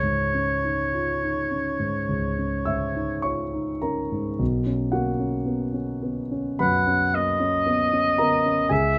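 A clear oboe with light vibrato sings a luminous, pastoral melody over a dark, mellow concert grand piano with deep bass in this brief impressionist classical duo excerpt in B major, drifting with rubato at 50-59 BPM in 4/4 as the harmony moves from C#add9 to Bmaj9 at 4.4 seconds, heard through close, detailed microphones with little reverb.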